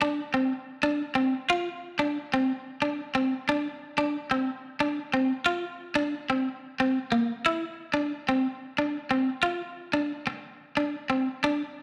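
A bright, twangy clean electric guitar plays alone up front, picked and compressed, carrying a carefree, danceable highlife line in a straight 12/8 through a wet echo-chamber reverb, with a new section arriving at 8.0 seconds in this brief cut from a longer piece.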